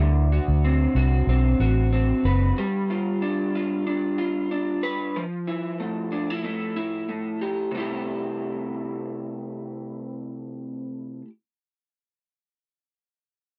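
A dry, close, 1970s-style studio sound with light reverb frames this laid-back, sunny indie pop excerpt in C major at 93 BPM with a light 16th-note swing, as a picked, slightly broken-up, lo-fi electric guitar through a small old amp, coloured by analog chorus and vibrato, carries the accompaniment up front over D6, G7, Fmaj9 and C6 chords while a round, punchy, foam-muted vintage fingered bass plays only until 2.5 seconds.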